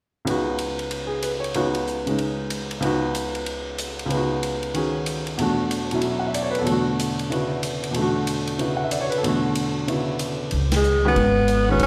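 Over a swung 4/4 feel, this hypnotic, spiritual modal jazz excerpt opens with a brilliant, intimate upright piano, its action noise audible through plate reverb, accompanying on suspended ninth chords above an airy big-band drum kit of hi-hat, ride and snare, until a woody pizzicato upright bass arrives at 10.5 seconds, the band accents at 10.7 seconds, and a breathy tenor saxophone solo with vibrato and scooped notes enters up front at 10.8 seconds, the whole performance heard through a club's PA with recital-hall reverb.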